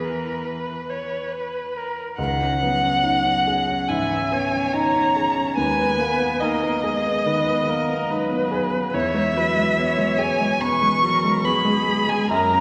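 Moving at a rubato 71 BPM in 4/4, this tender, intimate passage of neoclassical piano and strings is cut from a longer piece and runs 12.6 seconds. A single muted violin carries the melody up front, its con sordino tone dark and veiled with vibrato, though it sits at a slight distance. Beneath it, a felt-muted upright piano supplies soft, mellow accompaniment close to the listener, its audible action noise lending a natural, warm intimacy. A muted viola adds further accompaniment with a soft attack and a shadowy timbre, while a muted cello traces a second line from the background, using light vibrato and portamento. The harmony moves from C#madd9 at 2.2 seconds through G#m/D# to E at 8.9 seconds, all wrapped in the lingering reverb of a church or concert hall.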